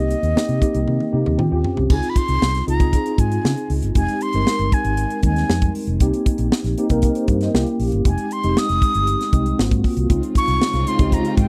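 A breathy concert flute carries the melody in this nocturnal, slick slice of polished 1980s jazz-funk pop, moving at 117 BPM in F minor over chords such as Dbmaj7, Fm9 and C7b9. A mellow tine electric piano sits up front with an ensemble chorus, while a round, foam-muted fingered electric bass and a tight, dry funk drum kit with a high-tuned snare drive the groove, with a drum fill from 0.9 to 1.9 seconds. A warm, bowed string section with vibrato and a soft attack enters at 10.1 seconds, all within a close 1970s-style studio sound touched by light reverb.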